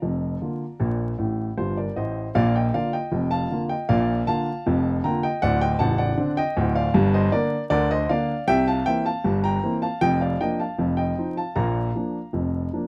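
Lively and cheerful, this short ragtime piano piece in Bb major moves at 78 BPM in a straight 2/4, cut from a longer performance. A solo baby grand piano with a natural, up-front tone spans A0 to Bb5 for the full 12.9 seconds, adding a fill from 1.2 to 2.4 seconds before the opening phrase repeats, then passing through D7, Gm and C7 to settle back on Bb. The close, dry 1970s-style studio sound carries light reverb and vinyl crackle.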